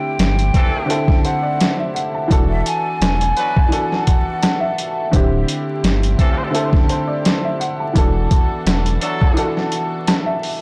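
A breathy jazz flute, distant and echoed on tape, opens this soulful, nostalgic boom-bap hip-hop excerpt over a worn, woody upright piano with cassette grit and soft, floating strings played sul tasto in the background, before the flute drops out at 5.1 seconds. At 85 BPM with a gentle swing in D mixolydian, a gritty, pitched-down sampler-style drum kit with a thumpy kick sits up front beside a deep, thick saturated sub bass, while a clear vintage horn section adds echoed stabs over chords moving between D9sus4 and E9sus4. The whole mix is blown-out and overdriven, with vinyl crackle and light reverb, and a break arrives at 9.4 seconds.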